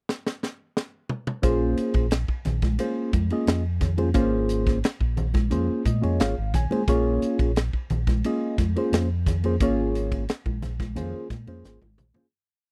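Driving and nocturnal, this electric jazz fusion piece opens with a tight funk drum fill over a pickup bar, then a mellow, reedy electric piano with phaser and a dark, round fingered bass riff enter at 1.4 seconds on a Bbm9 chord, the piano playing rootless funk chords. Ringing, high-tuned congas played with soft hands join at 2.5 seconds, sitting lower in the mix with a loose pattern beneath the drums' fusion ride groove, dark cymbals and tight kick, while the electric piano adds a brief fill midway. The dry, close 1970s-style studio sound keeps the drums, bass and piano up front, and the piece fades out from 9.6 seconds, ending with a closing drum fill.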